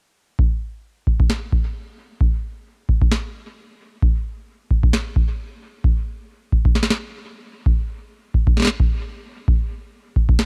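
IDM excerpt with an intricate, eerie mood, built on a swung 4/4 groove of electronic drums that sit up front in a digital ambience. A deep, tape-warmed analog kick drum opens at 0.4 seconds, and a tonal analog snare with the same warm tape character joins at 1.3 seconds, its hits trailing off in dub echo. The kick sits louder than the snare.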